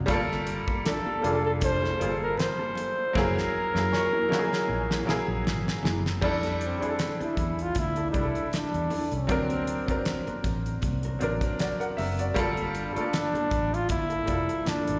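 Opening on a clear, worn grand piano with slapback echo, a very quiet French horn section holding chords until 6.2 s and a round, foam-muted fingered electric bass, this romantic 1970s-style soul piece at 78 BPM in F major, with swung 16ths, soon gathers a dark, clean electric guitar riff, a damped drum kit with fat snare and tight kick, ringing high-tuned congas, veiled bucket-muted trombone stabs in the background and a mellow, up-front flugelhorn melody from 0.9 s, the band heard through a venue PA with recital hall reverb as a drum fill leads into the Fmaj13 passage at 6.2 s.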